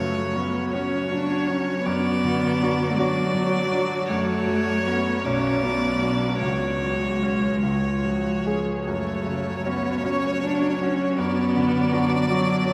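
In a slow, rubato 6/8 at 48-54 BPM, this solemn, melancholic romantic piano quartet movement in F# minor sets a focused, vibrato-rich violin melody over a cello second line with soft-attack portamento, a brilliant concert grand with deep bass and long sustain up front, and a warm, close viola in the background, all bathed in a cathedral reverb through this 12.7-second excerpt.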